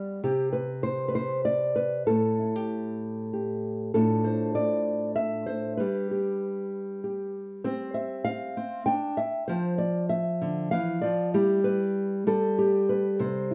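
A moderate studio reverb surrounds this peaceful, gentle folk excerpt in a straight 6/8 at 65 BPM, where a dark, small, up-front nylon-string guitar with fresh strings plays solo from 0.0 to 13.5 seconds, thumb-plucked across a span from A2 to G5 as the harmony drifts through A5, Dm7/A, Cadd9, Dm9 and G6, tuned to A4 = 442 Hz.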